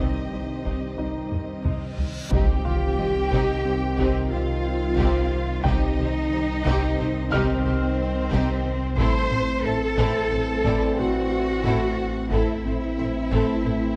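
In a straight 5/4 feel, this vast, relentless cinematic cue blends orchestra and electronics, with taiko drums struck with heavy sticks from 0.7 seconds. A reverse cymbal at 2.1 seconds builds into a huge impact as a deep, clean sine sub bass arrives at 2.3 seconds, joining the woody double basses and soft-attack cellos already playing. Lush violins carry the melody with vibrato and portamento over a focused second violin line, while distant violas, mellow French horns and tight trombones hold the harmony, and an ethereal, airy pad, a ringing harp-like synth pluck playing chorused arpeggios, and a clear baby grand piano with digital delay add texture in a dark production with moderate scoring-stage reverb.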